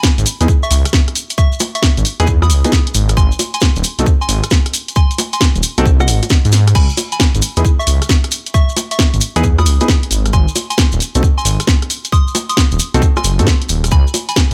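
A dry, close-sounding cut from a longer two-step UK garage track in C# minor, moving at 134 BPM with a heavily swung, skippy late-night feel over chords that shift between C#m9 and G#. A tight, up-front electronic kick and a garage kit of cracking snare, bright hi-hats, rim clicks, bongos and crash cymbal sit in a small room, joined by grainy maracas in the background, while a deep, rumbling detuned saw bass enters at 0.2 seconds with a sidechained pump. Dark, mellow grand piano stabs come in at 0.4 seconds, and a soft, pure FM bell melody with a warbling vintage chorus and tape echo floats high above.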